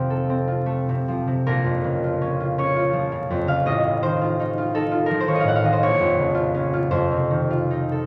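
A vinyl crackle sits beneath a wet recital-hall reverb, giving this short passage of classical solo harp a faintly aged, spacious sound. The concert harp is up front, bright and ringing, its fingerpicked strings sounding clearly through the reverberant hall. The piece is in 6/8 with a free, rubato feel, and its mood is gentle and wistful. Across its 8.1 seconds the harp moves between minor and dominant harmonies, from F to Bbm, then F7/A, back to Bbm and closing on F7. The instrument spans a generous compass from A1 up to Gb5, and the clip is cut from a longer piece.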